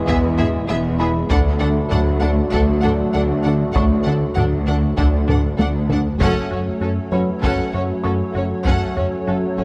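A heavy-sticked taiko ensemble drives this tense, vast cinematic piece, a hybrid of orchestral and electronic film scoring in F# minor at 98 BPM in a straight 4/4, cut from a longer work. Over it, a violin section with vibrato carries a focused, lush melody, supported by a softer second violin line and a smooth, even viola accompaniment. Underneath, a woody cello section and a rich double bass section anchor the low end alongside a smooth sawtooth synth bass riff, while mellow French horn and distant, roomy trombone sections hold sustained chords over a hollow, flute-like pad. A juicy, squelchy blip pluck adds very quiet arpeggios, and a felt-muted upright piano with audible action noise lays down a dark, intimate texture touched with delay. The harmony moves from E to D at 1.3 seconds, a drum fill runs from 5.3 to 6.2 seconds, and a band accent lands on F# minor at 6.2 seconds as the music shifts into a new section. 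Close, detailed microphones capture the ensemble within a moderate scoring stage reverb.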